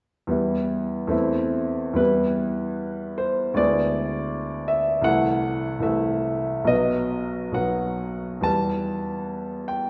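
The sound is soaked in the generous reverb of a recital hall, with a long tail that lingers after each chord and a top end that rolls off gently, lending the recording a vintage tint. At its center is a solo concert grand piano, placed up front and heard from 0.3 to 9.9 seconds, its tone clear and smooth with a deep bass reaching down into the low register. This is a romantic character piece in 2/4, played with a flexible rubato that makes the pulse breathe, and its mood is stormy yet bittersweet. A brief opening phrase moves from Em to Am over an E bass before a new passage begins at 2.0 seconds, passing through E7 over D, Am over C and a B chord before settling back on Em at 8.5 seconds. The moment is cut from a longer work.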